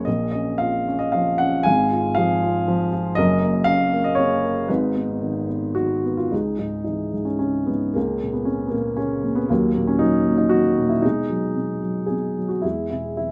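Moody and bittersweet, this lyrical classical solo piano passage, cut from a longer piece, has a dark, mellow, up-front baby grand in a rubato 3/4 at 105-122 BPM, moving from G# dorian to C# dorian at 6.3 s through chords such as A#m, G#m, C#m and B6 before settling on E, all under a light reverb.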